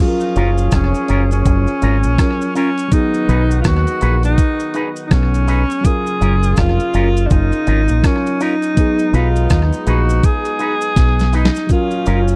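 A dry, close 1970s-style studio sound frames this sweet, smooth lovers rock reggae excerpt at 82 BPM in F# major, where a breathy, whispered tenor saxophone with tape echo carries the melody up front over a distant horn section, a mellow FM electric piano, a dark envelope-filtered guitar playing stabs, a round dub bass, a thumpy, sampler-style 8-bit drum machine with a fill at 11.0 seconds, and a vintage cabasa, all moving between F#maj7 and B6 chords.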